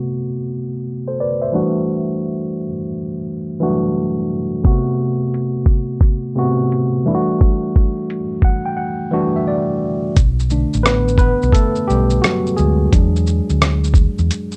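A worn, slightly out-of-tune tine electric piano, lightly overdriven through a combo amp and sitting up front, opens this melancholic, hazy lo-fi hip hop excerpt at 87 BPM in 4/4 with a 64% swing on the sixteenths. Its chords move between Am69 and Em11 under a filter sweep that runs to 10.2 s, softened further by a low-pass filter and plate reverb. A lo-fi sampler-style drum kit enters at 4.6 s with hi-hat, a thumpy kick, rim click and shaker, all pitched down, compressed and muffled with vintage 12-bit grit, before a brief break from 8.8 s. At 10.2 s the piano takes a solo over Bm7 and E9 while a hollow-body short-scale fingered electric bass joins, round, punchy and amped, in the low register. The dark production and moderate studio reverb wrap the whole cut in a dusky, late-night haze.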